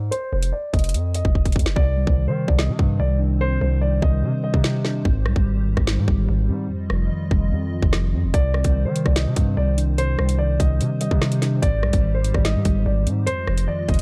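Ominous and cold, this excerpt of half-time drill hip hop in C minor moves at 146 BPM over a dry, dark production. A distorted, heavy 808-style bass with a noisy edge sits up front beside a hard-clipped kick, woody snare, rim clicks and metallic hi-hats, which fall silent after a drum fill at 1.4 seconds and return at 8.3 seconds. High, low-passed grand piano lines come and go above a clean tine electric piano and a hollow, flute-like pad with ensemble chorus tucked in the background, all moving through Cmadd9, Abmaj7 and Fm7 colours.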